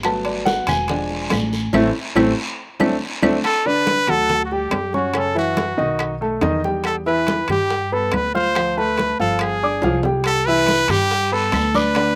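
Afro-Cuban jazz at 141 BPM in G major, sunny and danceable, opens with a warm, intimate upright piano soloing up front over pizzicato upright bass, thick-skinned congas, tight high bongos, ringing timbales, woody claves and a raspy, distant guiro, with a band accent and drum fill before a punchy, forceful trumpet takes the melody at 3.5 seconds, and the guiro returns at 10.3 seconds in this dry, outdoor-sounding cut from a longer piece.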